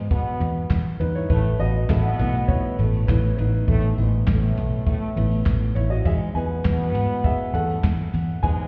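Piano-driven pop with a warm, uplifting mood, this excerpt moves at 101 BPM in a straight 4/4 and stays on a simple E to Asus2 and back to E progression. A dark upright piano carries the accompaniment and takes a solo through the whole passage, its tone woody, smooth and vintage. Beneath it, a muted fingered electric bass sits up front with a round, punchy, foam-muted sound, while a jazz brush drum kit adds handclaps, boomy kick, a medium-tuned snare, toms and dark ride cymbal in an airy, polished studio space. A mellow French horn section with light vibrato plays a classical-style second line in a low register, and a jingly, bright tambourine enters at 0.7 seconds, very quiet, close and dry. The overall mix sounds muffled, as if heard through a wall, with small room ambience and stone room reverb.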